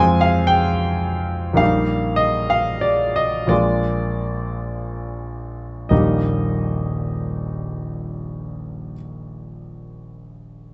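A romantic classical nocturne for solo piano, this brief passage cut from a longer piece feels tender and nostalgic, unfolding in Eb major in 6/8 at a very slow 22-40 BPM counted in dotted quarters, with free rubato. A clear concert grand carries everything from 0.0 to 10.7 seconds, ranging from Eb1 up to Ab5, its tone smooth and slightly vintage, with a deep bass anchoring the lower register. The harmony drifts from Fm through Eb/Bb and Bb7 while the tempo slows across the opening 5.9 seconds, then settles on Eb as a new section begins at that point. The piano sits up front in a large studio space with moderate reverb of about 1.1 seconds, and the sound is rolled off above 8.0 kHz, giving the recording a soft, rounded top.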